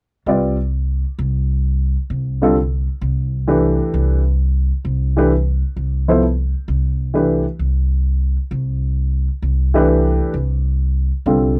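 Spiritual and hypnotic, this short jazz fragment, cut from a longer piece, swings in 4/4 at 131 BPM. An upright piano supplies the accompaniment, voicing a single rootless Fmaj9#11 chord through its middle register with a woody tone and short sustain. An upright bass, plucked on gut strings, anchors the low end with a thumpy, up-front sound. Both instruments enter together at 0.3 seconds and play through to the close at 11.6 seconds, with the piano sitting a touch louder than the bass. The sound is dry and close, in the manner of a 1970s studio recording, with little reverb around the two players.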